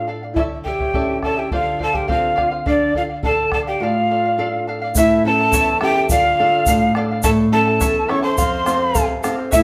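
In a straight 2/4, this melancholic yet festive Andean folk excerpt from a longer piece sets an up-front, breathy cane quena with vibrato and a crisp chiff over a reedy, rolled-off large wooden quena on the second line, shimmering fingerpicked charango and warm flamenco guitar, with a deep, dark bombo entering at 0.4 s and a grainy, saturated egg shaker joining at 5.0 s, as the band plays live together in one room bathed in a wet, large studio reverb.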